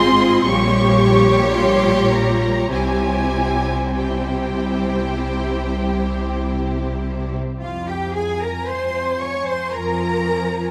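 Solemn and melancholic, this fragment of a slow romantic movement for string orchestra unfolds in F minor at roughly 48-58 BPM in 4/4, with a freely breathing rubato. A rich, lush violin section carries the bowed melody high in its range with smooth vibrato, while a second violin line sounds more distant beneath it. The viola section fills the middle with an even, smooth-topped accompaniment. Below, the cello section adds a warm, expressive voice, and the double basses anchor the bottom with a faraway, lightly vibrating tone. Every section plays throughout, all of it bathed in a vast cathedral reverberation. The harmony moves from a diminished colour toward C and settles onto F minor at 7.6 s, where the second section begins.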